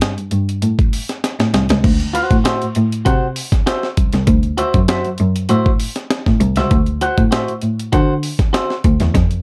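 Funk with a playful, energetic bounce, this short cut from a longer piece opens on a break from a gritty, compressed, sampler-style drum kit that sounds pitched up and tape-warm, with a thumpy kick, medium-tuned snare, hi-hat and crash cymbal, and a drum fill at the end of the break. A single bowed cello takes the bass role from 0.2 seconds, rich and expressive in its low register, with vibrato and portamento colouring its line. The harmony moves from a rootless Fadd9 to a D9 once the break ends. At 2.1 seconds a clean, picked electric guitar joins with a twangy, compressed tone in a higher register, playing until just before another drum fill at 9.1 seconds. All three parts sit up front in a dark, warm production with little reverb, giving the groove a close, intimate feel.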